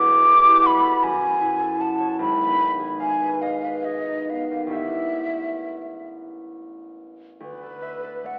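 A flute and a concert harp begin together in this dreamy, luminous impressionist duo, a short fragment lifted from a longer classical piece. The flute carries the melody up front, its tone airy and hollow with a gentle vibrato and soft attack, moving between B4 and D6. Beneath it, the harp supplies a warm, ringing, thumb-plucked accompaniment that reaches from E1 up to F#5 and sits well behind the flute in the balance. The music drifts in 6/8 at a slow, rubato 44-52 BPM counted in dotted quarters, set in D lydian, with the harmony gliding from Em11 through F#m7, G#m6 and A9sus4 before settling on Dsus2 at 7.4 seconds. A generous recital-hall reverb with a 1.7-second decay surrounds the pair, as if heard in a church or concert hall, though the overall sound carries the narrow, filtered character of AM radio.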